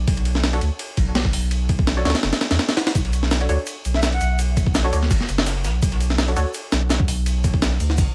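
This atmospheric, dark drum and bass fragment in B minor opens on a deep, round sub bass that sits up front, joined almost at once by a gritty, compressed sampler-style breakbeat kit with a thumpy kick, high-tuned snare, hi-hat and ride cymbal in a small room. Moving at 167 BPM with a light swing on the sixteenths, the groove rests on a single Bm7 chord. From 0.5 seconds, a muted, detuned sawtooth chord stab with a short filter pluck adds mellow colour through subtle chorus and dub echo, continuing until 6.5 seconds. At 3.0 seconds, a second, crunchier breakbeat kit slips in far in the background, its saturated, rolled-off hi-hat, shaker and snare filtered thin. A distant, airy jazz flute with a crisp chiff and vibrato makes a brief expressive appearance around 3.9 seconds, trailing dub echo, while vinyl crackle and small room ambience hover over the whole passage.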